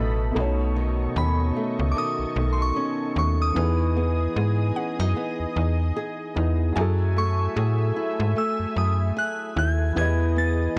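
A slow 75 BPM groove in 4/4 with a lightly swung sixteenth feel anchors this moody, late-night contemporary R&B passage, cut from a longer piece, driven by a snappy, metallic slap-like FM bass sitting up front. A soft, felt-muted upright piano with audible action noise, a dark fingerpicked nylon-string guitar with finger squeak and tape echo, and a lush, warbling, detuned unison pad with chorus fill out the harmony over B9, Emaj7 and F#m9. A woody, round mallet-like synth pluck glimmers in the background from 0.4 s, while a glassy, crystalline synth bell carries the melody from 1.2 s, all colored by a dry, gritty hardware sound with transformer saturation and cassette tape character.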